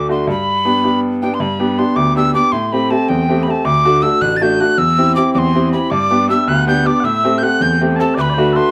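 A steady 6/8 pulse at 106 dotted-quarter beats per minute drives this lively, cheerful Celtic folk excerpt in G major. A breathy metal whistle carries the melody up front with a soft, chiffy attack, a slightly unsteady straight tone and rolled-off highs, while a brilliant concert grand piano with deep bass supplies the accompaniment through G, Am7, D and C/E in a moderate studio reverb. At 5.9 seconds, sweet, mellow small bagpipes enter in the background with a continuous second line.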